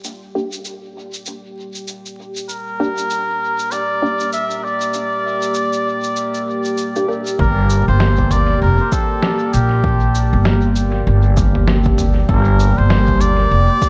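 Hazy and meditative, this ambient dub fragment opens on a smooth, chorused analog pad and a muffled, pitched-down sampler-style drum kit steeped in dub echo, while a nasal, filtered chord stab sweeps through phaser until 7.2 seconds, a veiled cup-muted trumpet carries the melody from 2.5 seconds, and at 7.4 seconds a woody pizzicato upright bass and a punchy, overdriven electronic kick arrive, the whole set in a dreamy, reverb-soaked mix flecked with vinyl crackle.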